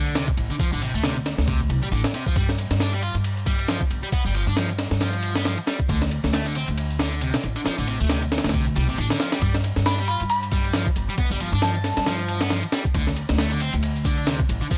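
A swung 136 BPM breakbeat in D dorian drives this energetic, raw fragment, its compressed, pitched-up sampler-style kit thumping up front with a medium-tuned snare, backed by a faint layer of metallic electronic hats with their own overdrive, while a woody, dark pizzicato upright bass on gut strings and a sludgy, double-tracked guitar riff, heavy with tube saturation and tape echo, churn over D7 and G7 chords, and a glassy FM synth bell warbles through chorus and tremolo from 9.9 to 12.2 seconds, the whole take dry and gritty on hardware and cassette tape.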